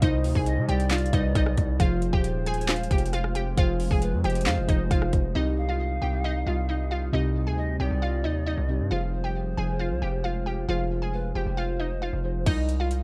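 A trap kit of hard-clipped kick, sharp snare, metallic hats, handclaps, rim clicks and crash sits up front for the first 5.2 seconds and returns at 12.5, over a distorted, saturated 808-style bass that hits heavy and decays. This dark, brooding half-time trap piece at 135 BPM in C minor moves between Cm and Fm. A crystalline, detuned wavetable pluck carries the melody with chorus, a filter sweep and digital delay, supported by muted, warbling felt-like synth keys, a mellow, ethereal FM pad in the background and a pure, reedy pan flute second line with vibrato and delay, all in a dry, dark mix.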